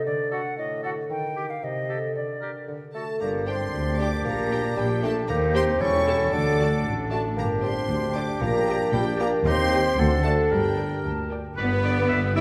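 Harp arpeggios and a pure, straight-toned flute open this sneaky, magical G minor film cue in 2/4 at 115 BPM. Within the first 0.3 seconds they are joined by a mellow bassoon accompaniment and by a bright, vintage clarinet and a clear oboe that weave second lines. At 2.9 seconds a metallic, ringing vibraphone takes the melody while a focused violin section adds a second line. From 3.2 seconds cellos, double basses and a distant, roomy tuba fill out the bass beneath soft French horn chords. Violas and a very quiet, faraway violin line thicken the texture, all inside a wet scoring-stage reverb that gives this playful, whimsical fragment its cinematic glow.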